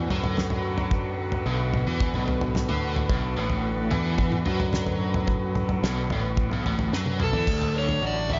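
Psychedelic rock with a hypnotic, hazy mood, cut from a longer piece, where a biting, double-tracked overdriven guitar riff with tremolo sits up front over round overdriven picked bass, a dry 70s drum kit with a fat snare and dark cymbals, smooth bowed chamber strings holding sustained chords, and a buzzing, shimmering tanpura drone in the background; a drum fill at 6.9 s then ushers in a dark overdriven slide guitar melody with slapback echo at 7.2 s, all in a small, lightly reverberant room.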